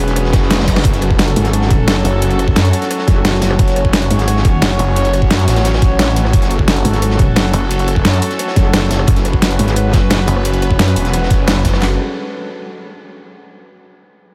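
Aggressive and dark, this excerpt of technical drum and bass opens straight into a drop, where a snarling, detuned saw bass growls up front with tube saturation and sidechain pumping beneath a bright, evolving resonant pad that carries sustained chords through chorus. Two overdriven dubstep kits stack a knocking kick, handclaps, deep snares, bright hats, rim clicks and toms, while a gritty acoustic breakbeat kit with dark cymbals sits in the background, and a very quiet reverse cymbal and zap arrive at 0.4 seconds alongside a brief drum fill. A metallic FM wobble bass wobbles up front in two stretches, from 1.4 to 4.8 seconds and again from 6.8 to 10.3, before a band accent at 11.5 seconds closes the drop in light reverb.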